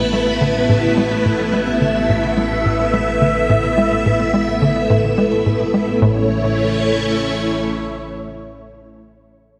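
A bright, up-front string machine ensemble leads this expansive, cosmic ambient excerpt in A major, holding sustained chords from A3 to E5 for the full 9.0 seconds, its soft attack and long release colored by phaser and ensemble chorus. At 107 BPM in a straight 4/4, a tight, punchy sequencer bass drives a nasal, saturated riff between A2 and G#3, treated with ensemble chorus and tape echo, until it stops at 6.3 seconds. Beneath it, a dark analog drone holds A1 with pulse-width modulation, ring modulation and chorus, and a filter sweep runs through it until 6.0 seconds; the drone lasts until 7.7 seconds. A very quiet unison pluck adds detuned, full-bodied arpeggios in the same register as the strings. The harmony rests on Asus2 before resolving to A at 6.0 seconds, all bathed in a wet concert hall reverb that lends the cut from a longer piece a spacious, floating depth.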